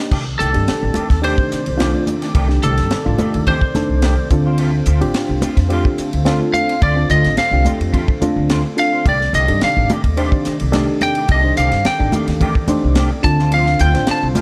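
A reedy, slightly out-of-tune electric piano with phaser opens this funky, nocturnal slice of electric jazz fusion, joined almost at once by a woody, thumpy pizzicato upright bass up front, a tight, dry funk drum kit with bright cymbals and a high-tuned snare, ringing, close congas played with soft hands, and clean semi-hollow guitar stabs treated with ensemble chorus and analog delay. Behind them a lush, warbling, detuned pad holds sustained chords through chorus as the harmony shifts between Cm69 and Dm7. From 0.4 s a bright, slightly broken-up, twangy picked lead guitar with analog delay takes a solo over the top, set in a dark production with light reverb and small-room ambience.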